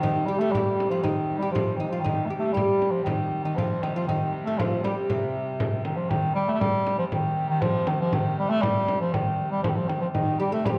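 From the first beat, a bass clarinet carries the melody over a reedy hurdy-gurdy drone, a woody oud second line and a small, bright frame drum in this short medieval dance excerpt. The music is in C dorian at 119 BPM in a straight 2/4, with a driving, ancient mood. The bass clarinet sits up front in a punchy, classical solo voice that still sounds distant and roomy. The fretless, plectrum-plucked oud has deep, doubled strings; it drops out at 5.8 seconds and returns at 10.1 seconds. Beneath, the wheel-bowed hurdy-gurdy holds a smooth-topped drone, while the compressed, saturated frame drum keeps time. A wet recital-hall reverb surrounds the mix, and worn cassette tape adds a warbling pitch drift.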